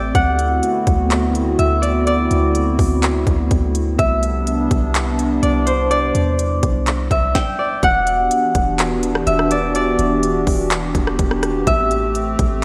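A wet concert-hall reverb with a long 2.6-second tail surrounds this melancholic, ethereal piece of atmospheric cloud-rap, a half-time hip hop passage cut from a longer work. Up front, a fingerpicked, ringing acoustic Celtic harp carries the melody between C5 and G5, softened by a low-pass filter and trailed by delay. Beneath it, a hollow, airy pad with a flute-like tone holds sustained chords through chorus and sidechain pumping, moving from D13 to Cmaj9 before shifting to Em7 at 7.8 seconds and then Am7. A clean, deep 808-style bass with a dark sine body and decaying notes anchors the low end. An electronic trap kit sits close in the mix with a hard-clipped kick, sharp snare, crisp hats, handclaps and rim clicks.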